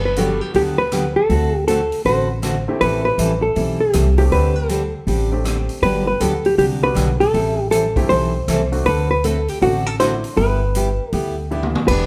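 Recorded live in one room with moderate large-studio reverb, this cheerful, down-home country and western swing clip in G major swings at 159 BPM, with a dark, clean hollow-body jazz guitar carrying the melody up front over a woody, thumpy gut-string upright bass, while a bright dreadnought steel-string acoustic guitar and a polished upright piano in the background fill out the accompaniment, a swinging big-band drum kit with a punchy kick adds a fill at 11.5 s, and a boxy, airy-bowed fiddle enters only at 11.9 s.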